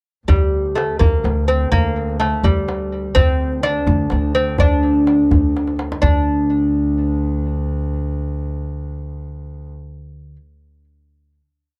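The rhythm moves in a straight 6/8 at 84 BPM, counted in dotted quarters, with the tombak, tight and hand-struck hard, setting a low and high stroke pattern from the background. This short, complete Persian modal piece in dastgah shur on D, tuned to A4 = 436 Hz, feels longing and hypnotic. Up front, a delicate fingerpicked lute with gut double strings, some doubled at the octave, carries an ornamented modal melody between G3 and D4, touched with tape echo. Beneath it, a woody, growly pizzicato upright bass on steel strings holds D2 and lands on the low drum strokes, while a bowed double bass sustains an earthy D2 drone with light vibrato and a smooth top. The tombak plays a fill at 5.6 seconds and then falls away, leaving the lute and basses on a long final note from 6.0 seconds, with the drone stopping at 9.7 seconds. The sound is a close, dry 1970s-style studio recording with a touch of light reverb.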